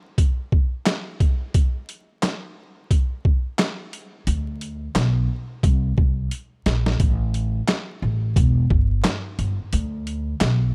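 Gritty, pitched-down sampler drums open this tough, dark boom-bap hip-hop excerpt, their compressed kit of thumpy kick, medium-tuned snare, hi-hat and handclaps sitting up front with a tape-warm edge. The groove moves at 88 BPM in 4/4 with a 59% swing on the sixteenths, and the drums carry the opening break alone from the start until the bass arrives at 4.3 seconds. The upright bass is played pizzicato on steel strings, its woody, acoustic tone placed up front and ranging from E1 to D2. A drum fill appears between 6.3 and 7.0 seconds before the pair plays on to the end of this fragment of a longer piece. The sound is dry, with little reverb, and vinyl crackle runs beneath the whole recording.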